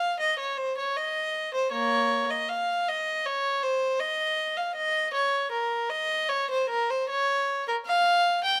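A single bowed violin carries this short classical passage alone, its gut-string tone rich and reedy with a nasal edge that marks a period-style approach. Cut from a longer baroque-style suite movement for unaccompanied violin, the 8.6-second fragment moves at a grave pace of 78 BPM in 4/4, played with a rubato feel that lets the line breathe freely. The mood is introspective and solemn, with the melody ranging from Bb3 up to G5. The one player sits up front in the sound, framed by light reverb that adds a touch of space. Tuning sits at A4 = 441 Hz, slightly above standard pitch.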